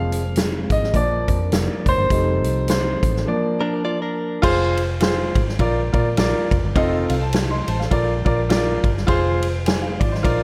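A concert grand piano with deep bass takes a passionate solo at the start of this short cut from an uptempo, swinging 1960s-style soul piece, over a soft, flute-like tonewheel organ in the background through a slow rotary speaker, a dark, round, foam-muted electric bass and an acoustic big-band drum kit with a punchy kick and medium-tuned snare in a big room. During a break a clean, picked electric guitar, recorded direct and compressed, plays a brief riff from 3.6 seconds, and both guitar and organ drop out at 4.4 seconds. From there the piano, bass and up-front drums push on with urgent energy, all under light reverb.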